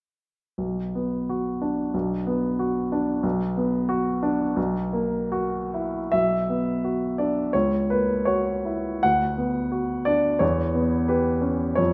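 A grand piano sits up front, its warm tone paired with a short sustain, carrying this romantic character piece for solo piano in B minor. The mood is bittersweet and passionate, moving in 2/4 with a rubato feel that lets the tempo drift between 70 and 94 BPM. The piano spans from B1 to F#5, playing from 0.6 to 11.9 seconds in this fragment cut from a longer piece. The opening phrase settles on B minor before leaning toward F#7 over a B bass, and at 6.1 seconds a new section begins, passing through F#7/C# and Bm/D before closing on C#m7b5/E. A moderate recital hall reverb gives the sound a sense of space, with a decay of 1.6 seconds.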